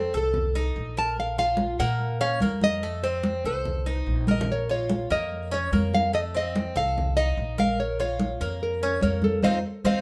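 A fingerpicked, bright nylon-string guitar carries the melody up front with a touch of tape echo in this sultry, danceable Cuban son and guajira cut at 145 BPM in Bb minor, over a metallic, double-strung tres playing arpeggios, a woody, thumpy pizzicato upright bass and soft-handed, thin-skinned congas, all moving between Bbm and F7 in a live room with moderate reverb, marked by a fill at 4.3 seconds and a band accent from 9.4 seconds.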